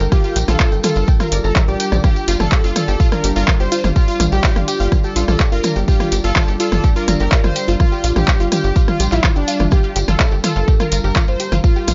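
A straight 4/4 pulse at 125 BPM drives this melodic techno excerpt in G minor, with a punchy, layered electronic kick sitting up front from 0.1 s and a tape-warm analog drum machine adding handclaps, hi-hat, rim click and toms, its toms and hats pumping against the sidechain. A tight, saturated sequencer bass between G1 and Bb1 drives underneath, its wave-folded sawtooth tone shaped by a fast-attack filter pluck and a moving notch. Above it, a lush, detuned unison pluck spins arpeggios spanning F4 to Bb6, thrown into dub echo, while a deep, moody pad holds sustained chords in the background with chorus and a slow attack over a single Gm7 harmony. A bold, brassy analog synth brass carries the melody between D4 and C5, thickened by chorus and digital delay, and a jingly acoustic tambourine sits far back in a small room. The mood is cinematic and melancholic, and the dry mix keeps its top end dark and rounded, tuned slightly low to A4 = 436 Hz.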